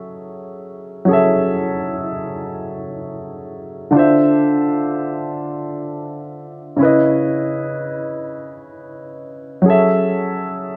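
R&B in 6/8, this brief cut from a longer piece has a sultry, yearning mood carried entirely by a solo baby grand piano, warm, natural and up front. Lush ninth chords move from F#m9 through Dm9 and C#m9 before settling back on F#m9 at 9.6 seconds, all bathed in light reverb.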